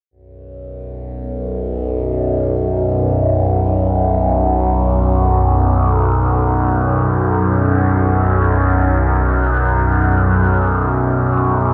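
A huge, wet ambient reverb surrounds this dark, unsettling drone piece, with a decay that lingers for seconds and gives the sound a cavernous depth. It moves in free time, tuned to A4 = 442 Hz, and is cut from a longer piece. A single overtone-sweeping drone carries the whole passage alone from 0.6 seconds, sitting up front and low between B1 and F#2 on a B5 harmony. Its sawtooth and sine tones sound resonant, with moving overtones, a slow attack, long sustain and a long release. Chorus, phaser, delay and its own reverb thicken and blur the tone into a brooding, restless haze.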